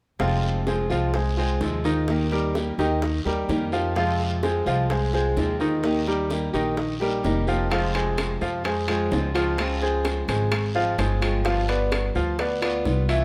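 A straight 4/4 pulse at 128 BPM drives this nostalgic Cuban son and guajira passage in F minor, cut from a longer piece, where a brilliant concert grand piano sits up front with arpeggios over a woody, thumpy pizzicato upright bass on gut strings, a small, fingerpicked nylon-string guitar with fresh strings adds warm accompaniment, tight high-tuned bongos with hard hands sit in the background beside a raspy, band-limited vintage guiro, and ringing metal-shell timbales arrive at 7.7 s as the harmony moves from Fm and Eb to Dbmaj7 and G7, the whole band set in a moderate large studio reverb.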